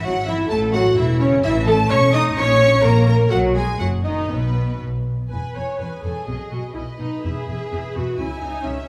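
The full string orchestra sounds together from the opening moment, a quick classical-period movement in E major that feels graceful and lively, taken at 127 BPM in 2/4 with a flexible, rubato pulse and tuned slightly low to A4 = 437 Hz. Two violin sections share the upper register: one carries the melody with a rich, vibrato-laden tone, while the other plays a close, smooth second line. The viola section supplies lush, up-front accompaniment in the middle register, its bowing smooth and even. Below them, the cello section sounds clear yet distant, and the double basses add an expressive, prominent bottom that reaches down to E1. The harmony moves through A, A#m and B before a brief unharmonized moment at 4.3 seconds, and a new passage begins at 5.3 seconds, circling between E and B before settling on C#m. A recital-hall reverb gives the ensemble a wet, resonant space, and the cellos and basses stop at 8.7 seconds, just before the upper strings, as this fragment of a longer piece ends.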